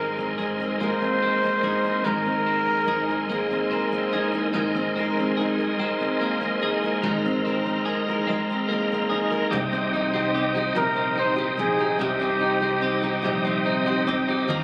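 Captured on a phone in a club-like room, this compressed excerpt of a heartfelt, romantic six-eight pop ballad sits in a moderate plate reverb with a long, lingering tail. Up front, a mellow flugelhorn with light vibrato and a smooth top sings the melody from 0.0 to 3.7 seconds and returns at 10.8 seconds. It is carried by a dark, full-bodied, double-tracked fingerpicked jumbo acoustic guitar and a reedy, bright tonewheel organ holding sustained chords with key click, chorus vibrato and a fast rotary speaker, while further back a clean, compressed twelve-string electric guitar picks arpeggios through subtle chorus and analog delay and a woody, thumpy pizzicato upright bass on gut strings stays in the background.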